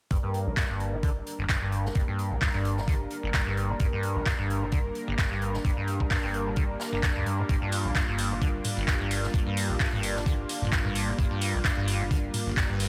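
Opening at 0.1 s on a G minor chord, this driving, trippy acid house cut at 130 BPM sets a squelchy, resonant acid bass riff up front, thickened with overdrive, lush chorus, cassette tape grit and digital delay and pumping against a thumpy, sampler-style electronic kick. Beneath it, a round, deep analog bass sustains and a detuned, chorused pad with a moving notch holds sustained chords. A faint, airy acoustic kit adds high-passed hi-hat and a medium-tuned snare, and from 0.6 s a booming analog drum machine joins up front with handclaps, toms and metallic hats. The groove swings lightly on the 16ths and sits in light reverb, all of it cut from a longer piece.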